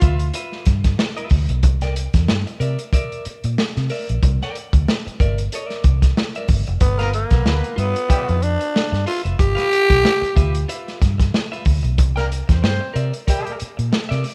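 This rough home-demo recording sits in studio reverb, with a crunchy breakbeat drum kit up front: tight kick, medium-tuned snare and hi-hat, saturated and gritty with a rolled-off top. It's a strutting, playful funk groove in G mixolydian at 93 BPM in 4/4, with a light swing on the 16ths, cut from a longer piece and moving between G6 and C9 chords. A vintage muted fingered electric bass, round and punchy through an amp, sits up front beside the drums. A clean, picked electric guitar plays compressed accompaniment bathed in spring reverb, lower in the mix. A growling tenor saxophone, raspy with light vibrato, appears briefly at the very start and then carries the melody from 6.8 seconds, while from 7.0 seconds a dark horn section, doubled in octaves, adds a distant, roomy second line until 13.5 seconds.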